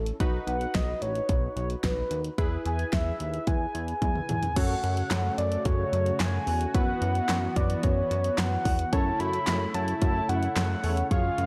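A punchy pop drum kit sits up front in this melancholic, driving synth-pop passage at 110 BPM, its fat snare, kick, hi-hat, handclaps, toms and crash cymbal bathed in gated reverb, with a drum fill from 4.0 to 4.6 s. A glossy, chorused synth bass and rounded analog keys join a mellow, horn-like lead over B and E chords before the music settles into F# minor at 4.6 s, where a bold, brassy pad with tremolo enters beneath the lead as it sustains its melody with vibrato. Light reverb surrounds this short section of a longer piece.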